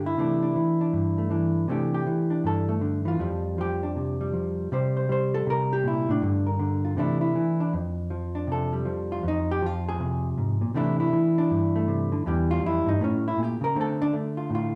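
Swung eighths at 159 BPM in 4/4 drive this playful solo jazz piece in C mixolydian, where a dark, clean, fingered hollow-body electric guitar sits up front, ranges from E2 to C5 and breaks into its solo at 1.7 s over chords such as C69, F69, Fm and Emmaj7, all bathed in the wet reverb of a large studio room with the feel of a live take.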